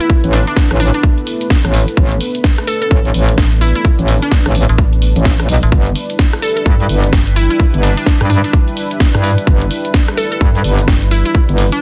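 A saturated, up-front wobble bass with a metallic FM bite and sidechain pumping drives this swaggering, gritty bass house excerpt at 128 BPM, joined by a mellow, overdriven FM bass from 3.4 to 7.5 seconds and again briefly from 10.9 to 11.2 seconds. A tight electronic kick and a garage kit of cracking snare, hi-hat, rim click and cabasa carry a swung 16th-note feel in a small room, while a crystalline wavetable pluck with chorus and tape echo rides over an evolving, full-bodied sawtooth pad as the harmony moves from Asus2 to G6 at 5.7 seconds. The mix is dry, dense and heavily limited.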